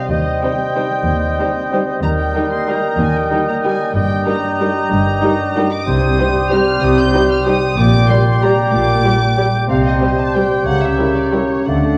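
A floating, soft-attacked violin section carries the melody of this dark, sweeping orchestral ballroom waltz in 3/4, swaying with rubato at 164-204 BPM, as a clear oboe, a hollow silver concert flute, a distant clarinet and a second, woody violin section weave lines around a mellow bassoon and a thumb-plucked, ringing harp, with dark bowed double basses and intimate cellos entering at 0.1 s, and faint violas and very quiet French horns joining at 0.4 s, the horns holding sustained chords, all bathed in a recital-hall reverb and the warbling pitch drift of worn cassette tape.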